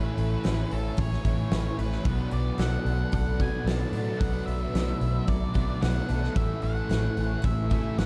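In a straight 4/4 feel, this blissful, dreamy shoegaze and dream pop rock excerpt sets a punchy kick and fat snare from a huge arena drum kit, entering at 0.2 seconds, under a round, foam-muted vintage bass up front, while a thick fuzz guitar and an overdriven semi-hollow guitar with reverse reverb churn riffs in the background, a shimmering, octave-doubled twelve-string acoustic guitar picks arpeggios with audible finger squeak, a mellow sawtooth string machine of violas holds chords through ensemble chorus, and a distorted octave-fuzz lead guitar with analog delay sings the melody over Amaj7 and Bm7 in a dark production with small room ambience.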